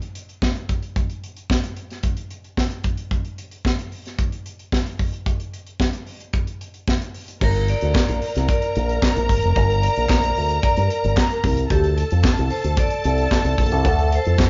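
A driving, sultry disco groove opens with a modern studio drum kit playing alone for the first 7.4 seconds, its punchy kick, high-tuned snare, hi-hat and crash sitting up front with a rolled-off top. At 7.4 seconds a fingered electric bass with an envelope filter arrives up front beside lush, woody bowed strings and a ringing, airy vibraphone melody with slow motor vibrato, while a crisp group handclap joins in the background at 7.9 seconds. The chords move from G minor to D minor seventh, and the band sounds as if playing live together in one room with light reverb and a mellow, darkened high end, in a cut from a longer piece.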